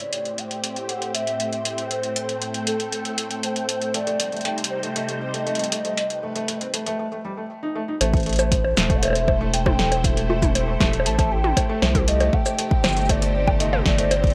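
Eerie and melancholic, this IDM excerpt moves at 118 BPM in a straight 4/4, tuned slightly flat to A4 = 439 Hz, with chords shifting between Am7, Cm and Cmadd9. A warbling, nostalgic lead carries the melody through chorus, tremolo and digital delay, over silky, vintage string-machine chords softened by phaser and ensemble chorus. An up-front electro drum machine with a punchy snare, metallic hats, bongos, cabasa and toms keeps time throughout, while a grainy, flickering texture glints in the background until a short break. At 3.9 seconds a felt-muted upright piano adds intimate, delayed arpeggios. The second section opens at 8.0 seconds with a round, deep analog bass, joined moments later by a tape-warm electronic kick, all set in a dry mix.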